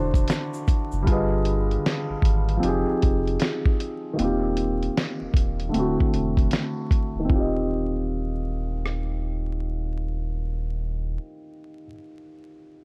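A muffled, compressed sampler-style drum kit with a thumpy kick and fat snare carries the beat of this cosy, mellow, swung lo-fi hip hop fragment from a longer piece until 9.1 seconds, over a round sine sub bass and a soft, intimate felt-muted upright piano whose cassette-tinged tone moves through a filter sweep until 7.3 seconds, while a grainy tube shaker sits briefly in the background near the start, all set in vinyl crackle and light small-room reverb.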